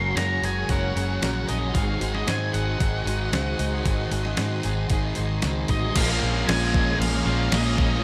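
A crisp 8-bit drum machine drives this brooding, hazy shoegaze and dream pop passage at 114 BPM in a straight 4/4, its thumpy kick and fat overdriven snare sitting up front beside a round, foam-muted vintage fingered bass. In Bb minor, moving from Gbadd9 to Ab7 and then to Bbm7 at 6.0 seconds, a thick fuzz guitar riff with lush chorus plays alongside a dark octave-fuzz lead melody with slapback echo, a very quiet direct-recorded clean electric guitar riff, boxy twelve-string acoustic arpeggios, and bright sawtooth string-machine violins holding slow-attack chords in the background. A sludgy, double-tracked overdriven guitar riff enters at 6.0 seconds, and the mix sits in a light digital reverb.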